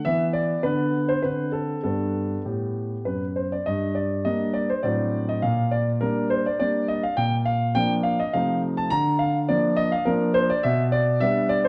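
A concert grand piano plays alone and up front through this short fragment of a classical-period sonatina, its tone warm and open with a deep bass and long sustain. The mood is elegant and cheerful, set in a graceful triple metre and shaped with a flexible, rubato feel. The piano covers a span from F#2 up to Bb5. At 3.7 seconds the harmony turns toward a shadowed minor colouring before moving on through brighter chords. A moderate recital hall reverb lends a gentle halo to the sound, and the overall production leans dark.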